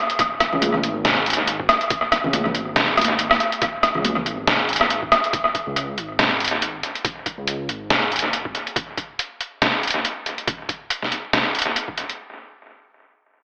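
Deep dubstep at 140 BPM with a half-time feel and a light swing on the sixteenths, this brooding, heavy excerpt is cut from a longer piece. A sampler-style trip hop drum kit sits up front with hi-hat, rim click and a medium-tuned snare, its compressed, pitched-down grit trailing into tape echo. An electronic kick adds a thumpy, gritty pulse from 0.2 to 12.0 seconds. A dark detuned saw bass rumbles between G#1 and C#2, deep and beating with a fast attack and sustained, mellow tone, before dropping out at 8.5 seconds. Congas, acoustic and set back in a small room, also carry tape echo and fall away at 4.2 seconds. A wet spring reverb and digital ambience give the echo-heavy mix an AM-radio character.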